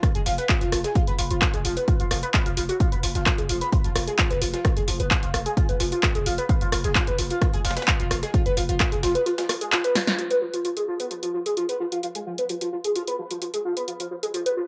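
A home-recorded cassette sound with light reverb wraps this dark, intense slice of driving peak-time techno at 130 BPM in a straight 4/4, built over an F chord with a flattened fifth. Up front, a screaming, guitar-like overdriven synth lead hammers out a riff soaked in phaser, lush chorus, analog delay and sidechain pumping, over a heavy, tape-warm electronic kick, a punchy techno kit of handclaps, rim clicks, snare and hats, a growling, buzzy 808-style bass pulsing through a low-pass filter, and a faint, gritty breakbeat sampler kit. The kick drops out at 9.3 seconds, and a drum fill and band accent around 10.1 seconds open a new section where the lead and techno kit carry on.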